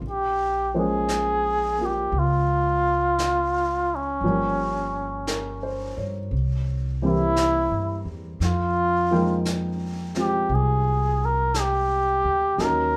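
A slow swung pulse at 57 BPM in 4/4 sets this melancholic, intimate jazz ballad in F minor, a short passage cut from a longer piece. Brushes on a vintage kit murmur softly at the back, with a medium-tuned snare and hi-hat whose rolled-off top keeps them hushed. The upright bass sits up front, plucked low with a woody tone, while a baby grand piano comps through the chords with short sustain and an audible trace of its own action noise. Entering at 0.1 s, a cup-muted trumpet carries the melody in a veiled, breathy voice, close and prominent, shading its soft-edged notes with vibrato and scooped pitches. The harmony moves from Bbm9 through Gm7b5 and C7 before settling on Fm11 at 8.4 s, all wrapped in a moderate club reverb.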